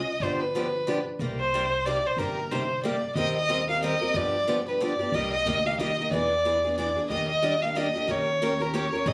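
A rich, bowed violin opens alone, its smooth, even tone carrying vibrato as it sings a bittersweet melody between Bb4 and F5 in this short passage of acoustic string swing in the gypsy-jazz tradition. At 0.2 s a bright, boxy parlour guitar with fresh strings joins in picked accompaniment, alongside a woody, thumpy pizzicato upright bass that stays dark and low beneath them. The tempo is a brisk 183 BPM in 3/4 with a swung eighth-note feel, starting in C minor over G7 and Cm9 before shifting to Eb major at 3.2 s. From there the harmony moves through Eb6, G7, Cm7, E7 and Ebmaj7 to close on Eb7, keeping the mood swinging and bittersweet. The violin sits close and up front with the guitar, all heard through a moderate club reverb in a compressed recording made on a phone in the room.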